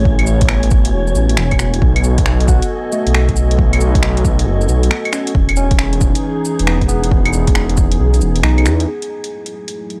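A swelling, detuned saw bass sits up front in this nocturnal, rainy future garage excerpt, its saturated, menacing tone pumping against the kick at 136 BPM with a 16th-note swing. A dark analog pad holds moody, chorused chords above it, moving from Amaj7 through B7 and Emaj7, while a barky tine electric piano colours the middle register with a clean combo-amp bite and tape echo. An overdriven electronic kick and a deep house kit of cabasa, claves, finger snaps and metallic hi-hats drive the groove in a digital ambience, captured in a dry, gritty hardware recording that carries a cassette-tape grain. An airy, wind-like tuned noise texture breathes in the background, and a mellow alto saxophone slips in for a brief, very quiet scooped note at 2.5 seconds. The kick drops out at 8.4 seconds on a band accent, and from 8.9 seconds a filter sweep on the pad opens a new section on F#m9.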